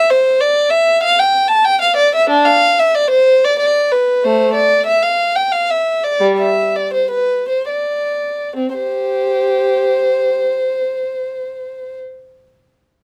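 The recording sounds close and detailed, with a light reverb around a single violin placed up front. This classical, baroque-style suite movement for unaccompanied violin sits in C major and moves in 3/4 with a rubato feel, its tempo drifting between 66 and 99 BPM. The mood is serene and dance-like. The violin plays alone from 0.0 to 12.0 seconds, ranging from G3 to A5 with a dark tone, soft attack, smooth top, and expressive vibrato and portamento. The pace slows from 3.3 to 8.6 seconds before the music turns to a new section, and the passage is cut from a longer piece.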